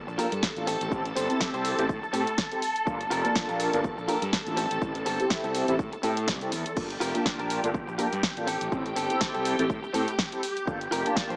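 Dark, detuned synth brass with chorus and phaser accompanies this sensual, nostalgic excerpt of filtered disco house at 123 BPM with a light 16th-note swing, over swirling phased string-machine chords, a bright, scooped clean electric guitar riff, a round fuzz-overdriven fingered bass, a punchy house kit of snare, hi-hat, shaker and crash, and an electronic kick, as the pumping, low-pass-filtered instruments move between Gm7 and Am7 in a dry, gritty, small-speaker sound with light digital reverb.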